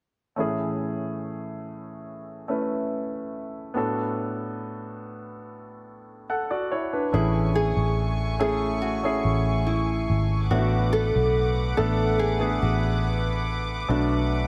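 A clear concert grand piano opens this tender, heartfelt pop excerpt at 71 BPM in A major, moving between Amaj7 and D6/A with a polished, up-front presence and deep bass. At 7.1 seconds a small, fingerpicked nylon-string guitar takes the melody, while a soft-attack, floating string section sustains bowed chords and a dark, foam-muted electric bass adds round, punchy low notes. Light reverb gives the whole a small-room ambience, and the piece is cut off at 14.5 seconds.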